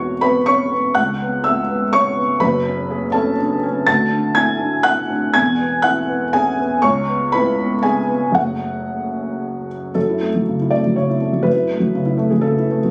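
A felt-muted upright piano plays alone and up front in this wistful, reflective neoclassical minimalist piece in F# minor, its soft, boxy, intimate tone and audible action noise carried by light reverb and studio ambience in a phone recording, moving rubato in 3/4 at 122 BPM across a range from E1 to A6 through chords such as C#m7, F#madd9 and Dadd9 before shifting to a new section at 9.9 seconds in this 12.9-second cut from a longer piece.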